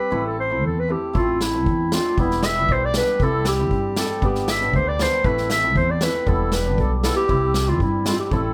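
A moderately reverberant studio sound frames this festive yet bittersweet klezmer passage in A minor at 117 BPM in 2/4, where a mellow, roomy clarinet sings the melody up front over a bright, shimmering hammered dulcimer and a woody, growly pizzicato upright bass, with an airy street-band drum kit of boomy kick and medium-tuned snare joining at 1.1 seconds as the chords cycle through Am, Em, C and G.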